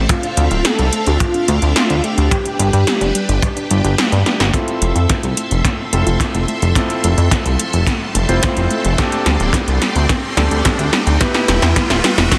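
A glossy, nasal chorused synth bass with tube saturation pumps through this nostalgic, driving 108 BPM synthwave excerpt, under lush, sidechained string-machine chords, a warbling lo-fi pluck playing arpeggios through chorus and digital delay, 80s electronic pad drums with a gated snare and metallic hats over a punchy, gritty kick, and a smooth, vibrato-laden synth lead melody that ends at 3.9 s; a clangy electric grand piano then enters at 4.5 s with filter-swept stabs, and a background riser joins from 6.5 s, set in light digital ambience under a dense, heavily limited master.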